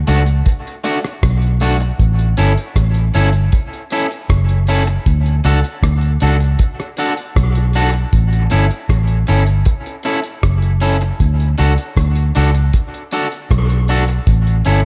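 A hazy, echo-heavy studio sound frames this laid-back dub reggae excerpt, cut from a longer piece and moving at 78 BPM in a straight 4/4 in D major. A vintage muted fingered electric bass sits up front from the very start, its foam-muted, round, dark tone anchoring the groove low in its range. A cloth-damped drum kit enters at 0.1 seconds with hi-hat, a tight kick and rim click, sounding dry, thuddy and smooth with a rolled-off top. An electric guitar at the edge of break-up, picked and twangy, joins at the same moment, its slightly broken-up tone carrying a warbly pitch drift and trailing dub echo. The harmony simply rocks between D and A throughout, giving the whole passage a relaxed, drifting sway.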